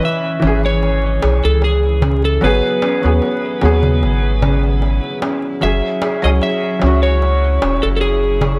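A straight 4/4 pulse at 75 BPM drives this smoky, hypnotic trip hop excerpt in C# minor, where a crisp metal-shell darbuka and a deep, up-front round analog bass (entering at 0.4 s) support a slightly broken-up electric slide guitar melody played with fingerpicks, a mellow felt-muted upright piano with audible action noise under harmonic tremolo and tape echo, bell-like celesta arpeggios in the background, and a very quiet, tense string-like drone arriving at 1.9 s, set in vinyl crackle and small room ambience as the chords move from C#m7 to G#m7 to F#sus2.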